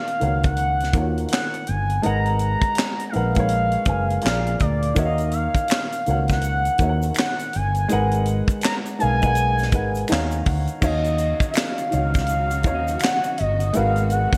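A bright 1980s-style digital sheen and moderate plate reverb frame this soulful, sultry R&B and neo-soul excerpt in Eb minor, moving at 82 BPM with a swung 16th feel over Ebm9, Abm9 and Bb7 chords. A smooth, gliding portamento lead with chorus, delay and vibrato carries the melody over a dark, woody upright piano, while a tight funk drum kit with a high-tuned snare, handclaps and gated reverb sits up front beside a round, amped fretless electric bass. An egg shaker and finger snaps join in the background at 5.0 s, the piano plays a fill at 9.7 s, and a lush, bowed string section enters at 10.8 s with sustained chords.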